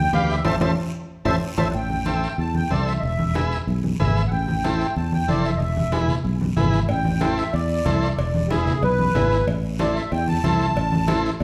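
A straight 4/4 cumbia groove at 186 BPM drives this fiery, danceable Latin excerpt in A harmonic minor, with a round, dark fingered electric bass up front under low-tuned, compressed congas and a raspy, close guiro, while ringing metal-shell cowbell and timbales sit in the background, dropping out after a band accent and drum fill at 1.7 s and returning at 6.9 s; a buzzy vintage combo organ with heavy vibrato adds a transistor fill before the reedy, sweet accordion with light tremolo tuning takes a smooth solo over Am, E and E7 changes, all heard from further back in a reverberant large studio.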